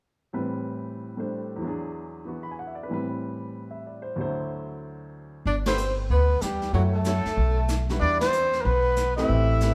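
A dark, breathy trumpet with vibrato and scooped notes carries the melody up front in this relaxed passage of small-group swing jazz, with a subtoned tenor saxophone playing a second line below it from 5.5 seconds. Before that, a clear baby grand piano with short sustain plays the accompaniment alone, and then a woody, thumpy pizzicato upright bass and a brushed jazz kit with snare, hi-hat and ride cymbal join, the band hitting accents together at 5.6 and 8.2 seconds. The group plays live in one large studio room with moderate reverb, giving the swing an easy, warm glow.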